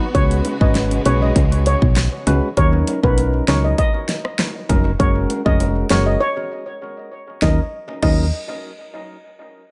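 A hollow, chorused organ stab with sidechain pumping and tape echo opens beside a bowed studio string section, full of vibrato and portamento, that drops out at 2.5 seconds, while a mellow, shimmering steel pan lead with its own tape echo, a round, dark FM bass and a punchy, up-front electronic drum kit of kick, fat snare, bright hi-hat, rim click and crash drive this sultry, tough dancehall groove, joined by very quiet low-tuned bongos and broken by a brief break at 6.2 seconds in an echo-heavy, small-room mix.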